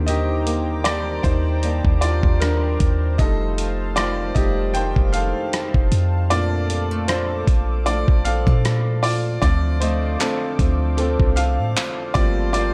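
Contemporary R&B with a late-night, longing mood, this short cut from a longer piece moves with a gently swung 16th-note feel. A clear, boxy baby grand piano sits up front and carries the lead throughout, with the harmony moving from Cm9/Eb through F7 and Bbmaj7 to Dm7 and finally Gm11. Beneath it, a clean 808-style bass gives deep, boomy sine tones with a fast attack and decaying notes, while a dusty soul sampler-style kit enters at 0.1 s with a thumpy kick, hi-hat, rim click and handclaps, compressed and gritty as if re-recorded in a large room. In the background, a fingerpicked flamenco guitar plays arpeggios with audible finger squeak and a tape echo trailing its notes. A shimmering, retro pulse-width pad holds sustained chords high in the register, its slow attack and chorus colored by sidechain pumping. The whole mix has a dark, digital ambience that suits the intimate, after-hours atmosphere.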